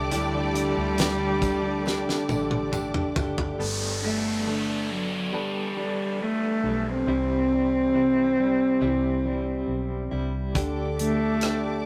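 This pop ballad excerpt moves at a slow 69 BPM in G major, with a hopeful, tender mood and a rough rehearsal-room sound touched by tube saturation and moderate reverb. A dark, intimate cello carries the melody up front from 0.1 s, bowed with vibrato, a soft attack and a smooth sul tasto tone. A clear baby grand piano and a clean, compressed electric guitar playing tremolo-treated arpeggios sit in the background throughout. A round, punchy muted fingered bass anchors the low end. In the opening, a lush string section holds sustained chords while a distant violin section adds an expressive second line with portamento, and a damped 70s drum kit with a fat snare and tight kick plays until 3.6 s, closing that passage with a fill that starts at 1.9 s, joined by a very quiet, jingly tambourine. An electronic downlifter fills the middle stretch while the chords move from Gadd9 to C, before drums and strings return near the end on Dsus4.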